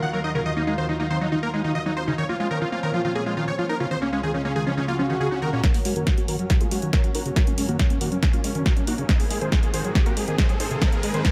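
A dense, compressed supersaw carries the melody up front in this driving, emotional uplifting trance excerpt at 139 BPM in 4/4, its huge detuned sawtooth layers pumping against the sidechain through a low-pass filter and delay. Beneath it, a lush unison pad holds sustained chords with a slow attack and a bright, chorused sheen, while a squelchy, resonant acid bass runs arpeggios with chorus and delay, both also pumping with the sidechain. The harmony moves from Ebmadd9 through Bbmadd9 and Db to Gb, arriving on Abadd9 at 9.1 seconds. A background swell begins at 5.0 seconds, and at 5.6 seconds a punchy, tape-warm analog kick arrives alongside a layered techno kit of snare and filtered hi-hats, launching a build-up with a drum fill, a riser and filter sweeps on both the supersaw and the bass. The whole excerpt sits in a moderate recital hall reverb that lends the climb a sense of space.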